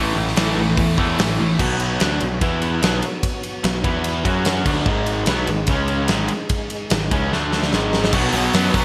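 Heavy, menacing hard rock opens with a punchy fuzz-overdriven picked bass, two bright overdriven cranked stack guitars playing riffs in the background, a double-tracked high-gain distorted guitar riff, and a very quiet, dark tonewheel organ holding sustained chords through a fast rotary speaker. A fat-snared, up-front rock drum kit with gated reverb enters at 0.3 s and drives the clip. The high-gain guitar drops out after the opening and returns from 8.1 s after a drum fill. Everything is bathed in a lush hall reverb with bright 1980s-style digital production.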